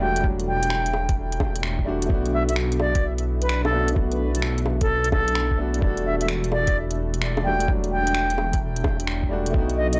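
Future garage with a rainy, wistful mood, cut from a longer piece, where a bright, reedy flute with vibrato carries the melody through tape echo over clear, woody upright piano and a deep, warbling ambient pad that pump with sidechain compression, while a rumbling detuned saw bass sits up front and a muffled, thumpy kick and crisp electronic kit of bongos, finger snaps and hi-hat enter at 0.2 seconds, all in a dry, gritty recording with light reverb.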